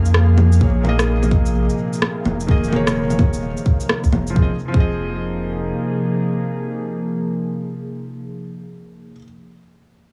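Future garage in F minor at 128 BPM with swung sixteenths, this ghostly, rainy fragment of a longer piece pairs a warbling, detuned tape-like pad with chorus and a felt-muted upright piano whose mellow, intimate tone carries audible action noise and tape echo, both pumping against the beat as the chords move from Dbmaj7 through Eb7sus4 to Fm7. A round, deep dub sub bass also pumps beneath them until 5.7 seconds, while layered electronic shaker, rim click and bongos carrying tape echo and a small-room sound come in at 0.1 seconds, joined by a tight, up-front electronic kick at 0.6 seconds. A very quiet, flickering grainy texture hovers high above until 4.4 seconds, all within a dry, echo-heavy mix.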